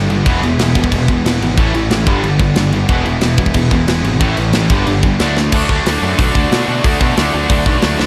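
Rowdy and upbeat, this punk rock excerpt charges along at 182 BPM in a straight 4/4, with three distorted electric guitars driving picked riffs, one of them overdriven and double-tracked, the other two tight and bright, all sitting back in the mix. A growly, fuzz-laden picked bass anchors the low end, while an up-front metal drum kit, with bright cymbals, a medium-tuned snare and a tight kick in a big room, joins at 0.1 seconds. Chords move through E, A and G and reach D just before a drum fill at 5.4 seconds leads into a new section, all under a light reverb.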